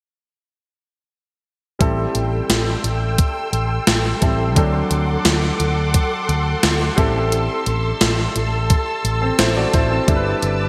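A dramatic, urgent 1980s-style pop excerpt cut from a longer piece, where a thumpy, up-front digital drum machine with a gated-reverb snare plays alongside a round, punchy fretless bass, clear concert grand piano chords and a vintage sawtooth string machine of violas with slow attack and ensemble chorus, moving from Am7 through D7 to Em7/G inside a lush hall reverb and bright digital production.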